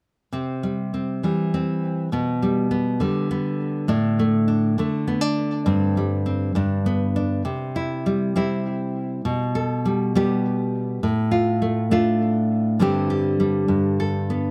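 Close, detailed microphones and light reverb frame this nostalgic folk excerpt in a straight 6/8, where a full-bodied, up-front nylon-string guitar, fingerpicked with a deep classical tone and touched by tape echo, plays alone from 0.3 to 14.5 seconds, moving through a C, G/B, D5/A, Gsus4, G progression before a second phrase from 7.5 seconds darkens it with a Dm/A.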